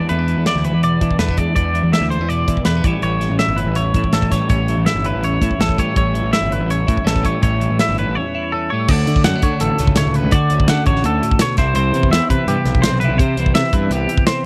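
Bright, twangy arpeggios from an up-front electric guitar with subtle chorus and tape echo ride over a clean, compressed twelve-string electric guitar, a fuzzy, overdriven picked bass and a punchy acoustic drum kit in this playful, wistful math rock and midwest emo piece at 164 BPM in D major, moving from E7 and A9 to Dmaj7 and Cmaj7 after a brief break at 8.2 seconds, in a dry, close 1970s-style studio recording.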